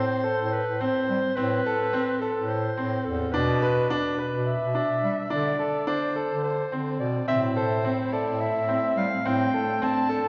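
Contemporary chamber music in a restless, hypnotic 7/8 at 213 BPM in A minor, cut from a longer piece: a mellow clarinet carries the melody with vibrato and a soft, jazz-tinged attack, while a brilliant concert grand piano cycles arpeggios and a bass clarinet anchors the low end with a classical touch. At 7.3 s a dark, woody string section slips in behind them with lush bowed sustained chords as the harmony returns to A minor. The whole ensemble sits in the long, wet reverb of a church or concert hall.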